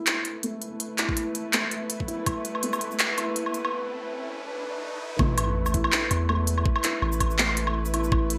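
Bright, 1980s-style digital production with a moderate plate reverb frames this spacious, heavy slice of half-time drum and bass, cut from a longer piece and running at 164 BPM in 4/4 with a light swing on the sixteenths. A felt-muted upright piano opens on soft, boxy arpeggios with audible action noise, its dark, intimate tone roughened by 12-bit sampler grit, low-pass filtering and delay, while a filter sweep runs across it through the build-up. A tense, string-like drone holds sustained chords beneath, detuned and ring-modulated with vibrato, pumping against the sidechain. The organic electronic kit sits up front with crisp hats, handclaps, shaker and woodblock, overdriven and re-recorded in a large room with gated reverb, and a knocking, tape-tinged electronic kick arrives at 1.1 seconds. A riser enters at 2.1 seconds and carries through a brief break, and at 5.2 seconds the drop lands with an impact and a sub drop as a deep, mellow 808-style bass takes hold with long, sine-rounded notes.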